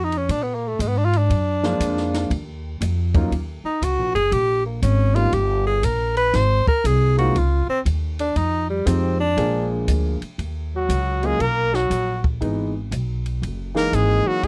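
A clear, forceful tenor saxophone solos with vibrato over a woody, thumpy pizzicato upright bass and a dry, compact cocktail drum kit with dark cymbals, a high-tuned snare and a punchy kick. This moody, swinging small-group jazz sits in Eb minor at 119 BPM, and a grand piano adds accompaniment from 1.6 seconds. The saxophone's solo runs until 10.4 seconds, and a brilliant trumpet enters at 10.8 seconds with scooped notes and light vibrato to carry the melody, all captured in a close, 1970s-style studio sound with little reverb.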